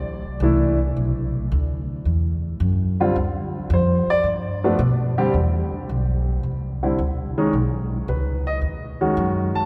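A polished, present grand piano carries the melody throughout this short cut from a longer jazz piano trio performance, entering at 0.4 s and ranging from D3 up to A5. An acoustic upright bass with steel strings, played pizzicato and sounding woody, opens the passage at 0.0 s and holds the low end between B1 and B2. Both instruments sit up front, and the piece moves at 110 BPM in 4/4 with a swung eighth-note feel in G major. The harmony travels from a rootless Gmaj7 through Dm and G to Cmaj9 and B, across two statements of the same section. A wet cathedral reverb, typical of a church or concert hall, surrounds the pair with a long tail, giving the playful, warm mood a spacious glow.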